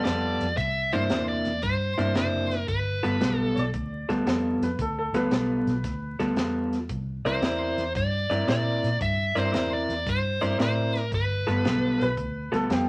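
A swaggering, laid-back electric blues shuffle with a swung feel, built on a twangy, slightly broken-up electric guitar riff through a small old amp, a round, foam-muted fingered bass and a compact cocktail kit with a high-tuned snare and punchy kick, while a dark, overdriven lead guitar carries the melody in two phrases and a woody upright piano with audible action noise adds a second line from 3.5 to 6.2 seconds and again from 12.0 seconds, all in a moderate reverb touched with vinyl crackle.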